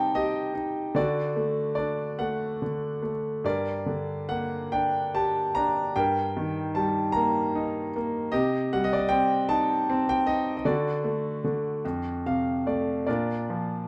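Warm and calm, this lyrical classical solo piano passage, cut from a longer piece, drifts in a rubato 6/8 at roughly 47-52 BPM in G harmonic minor, its intimate, up-front concert grand, with deep bass and audible action noise, sitting in a wet spring reverb and adding a brief fill from 11.8 to 13.1 seconds as the harmony moves through F toward Bb.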